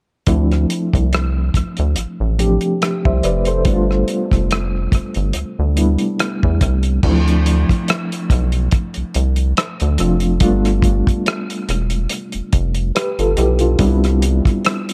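R&B and neo-soul at a relaxed 71 BPM in D dorian, this soulful, smooth snippet from a longer piece sits on a swung sixteenth-note feel as the harmony moves from Dm7 to G7 at 10.4 seconds and Cmaj7 at 13.8. A reedy, worn, slightly out-of-tune electric piano carries the accompaniment with fast tremolo and tape echo, over a rubbery, hollow square-wave bass with a bouncy filter pluck. A dry, lo-fi soul drum kit with muffled, dark cymbals, a tight kick, rim clicks and its own tape echo sits up front in a light, small-room mix heavy on echo.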